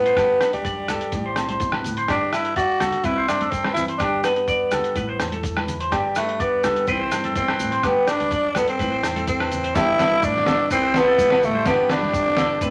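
Set in a wet studio reverb, this joyful highlife guitar-band passage in G major moves at 125 BPM over a G, Am and C progression. A raspy, growling tenor saxophone carries the melody up front with vibrato, while a twangy, clean electric guitar picks phaser-coloured arpeggios over a dark, fingerpicked nylon-string guitar with audible finger squeak. Beneath them sit a round, punchy fingered bass and a compressed, pitched-down sampler-style drum kit with a thumpy kick, joined by grainy maracas, ringing agogo bells and bright congas in the background, before a buzzy vintage combo organ adds very quiet sustained chords with heavy vibrato from 9.8 seconds.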